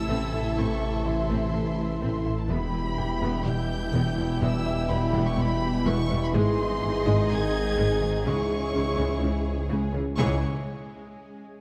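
Tense and futuristic, this cinematic excerpt blends orchestra and electronics in a hybrid film-score style at 125 BPM in a straight 4/4, moving through Am, Em, G# and C#m. A focused, smooth-topped chamber violin section carries the melody high above a distant, lush studio violin line, while a close, even viola section sits in the background with accompaniment. Bright trombones in the background and very quiet, mellow close-miked French horns hold sustained chords, joined from 0.5 s by a very quiet swarming, warbling granular drone. The low end rests on a menacing, saturated detuned saw bass with an evolving filter swell, joined by a background double bass section and a very quiet cello section. A very quiet round analog pluck with a moving notch and chorus plays arpeggios, and a very quiet, intimate baby grand piano, its action noise audible, adds texture until 8.5 s. The whole mix sits in a wet scoring-stage reverb.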